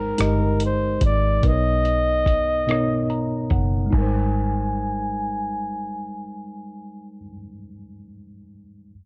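A mellow flugelhorn carries the melody up front, its present, jazz-style solo line colored by a light vibrato and ranging from Bb4 to Ab5. This is a slow six-eight R&B excerpt at 48 BPM with a tender mood, built over a worn, slightly out-of-tune tine electric piano that sounds clean and direct as it voices Abmaj9, Bmaj9 and a return to Abmaj9. A vintage fingered electric bass with a round, foam-muted, amped tone holds the low end between F#1 and B1. A dusty, sampler-style drum kit, gritty and compressed with a thumpy kick, plays crash, hi-hat, kick and rim click from 0.2 to 4.1 s, while a filter sweep runs through the opening phrase and the electric piano adds a fill just before the second phrase begins at 3.9 s. The production is dark and low-pass filtered with little reverb, and the electric piano rings on alone until 8.9 s after the other parts fall away.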